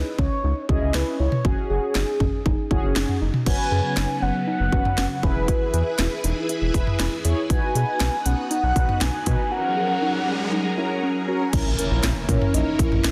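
A straight 4/4 pulse at 119 BPM drives this nocturnal synth-pop excerpt, led by a punchy, up-front house drum kit with cracking snare and crisp hats over a deep, dark analog bass. A mellow horn-like synth lead with chorus, delay and vibrato carries the melody above brassy, detuned synth brass and a soft pluck playing arpeggios in the background, and a swirling, vintage string machine with phaser adds bright sustained chords from 3.5 s as the harmony moves from C#madd9 through F#sus4, E and B. A background riser from 9.2 s leads into an impact on an A#dim chord at 11.5 s, all set in a lush hall reverb with a dense, heavily limited master.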